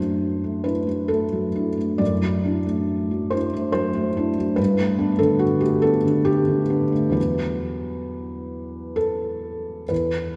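Wistful and intimate, this brief fragment of neoclassical minimalist piano drifts in 3/4 at roughly 65-72 BPM with a rubato feel, centred in E minor. A felt-muted upright piano plays alone throughout, its tone mellow and dark behind thick felt, sitting up front with the soft clatter of its action audible. The harmony moves from Dadd9/F# to Gadd9 at 4.6 seconds and settles on Esus2 at 7.2 seconds, the voicings spanning from E2 up to D5. A church reverb with a long 2.6-second tail surrounds the close, natural piano sound, lending the hushed playing a sense of space. Cut from a longer piece, the clip lasts just over ten seconds.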